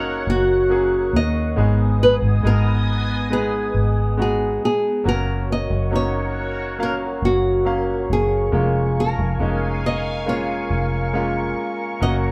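Tender and hopeful, this pop ballad moves at a relaxed 69 BPM in F# major, with a small, warm fingerpicked nylon-string guitar carrying the melody up front over a bright, polished concert grand piano with deep bass and short sustain. An evolving, detuned sawtooth pad with a slow attack, filter swell and chorus holds sustained chords beneath, while a dark, round, foam-muted electric bass sits up front at the bottom. The players sound together in one small room with moderate reverb, and the chords move from F# through G#m and back before landing on C#6/E# at 8.5 seconds in this short cut from a longer piece.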